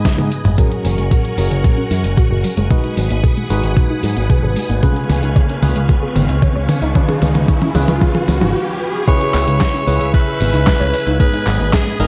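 A raspy, gritty alto saxophone cuts in at 9.1 seconds with a forceful, pop-style solo melody touched by light vibrato and delay, lending this nostalgic, melodramatic italo disco excerpt its most striking moment. Beneath it, a thumpy electronic kick sits up front with a sampler-style 12-bit drum machine supplying cabasa, handclaps, hi-hat, a medium-tuned snare and toms, both re-recorded in a large room with a tape-like warmth. A bright picked electric bass with an envelope filter and tube saturation drives the low end, while a worn, slightly out-of-tune tine electric piano plays stabs that pass through a filter sweep. A swirling string machine holds sustained chords through ensemble chorus, phaser and vintage sampler grit, and a warbling, dusty pluck traces mellow arpeggios in the background, with a riser building from 3.4 seconds through a brief break until the saxophone arrives. The dark production carries light digital ambience and a bed of vinyl crackle, with the harmony moving from G#m through F#add9 and C#7 before shifting to C#m7 under the solo.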